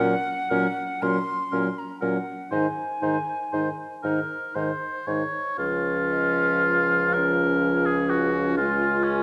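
Tender and warm, this slow, rubato romantic movement for wind quintet in 6/8 and Db major drifts at 38-43 BPM in dotted quarters, with an airy, distant silver concert flute singing the melody above an up-front oboe carrying the second line with light vibrato, a clear, smooth-topped clarinet and a present French horn filling the accompaniment, and a mellow bassoon grounding the bass, all set in a reverberant recital hall as the passage moves into a new section at 5.6 seconds.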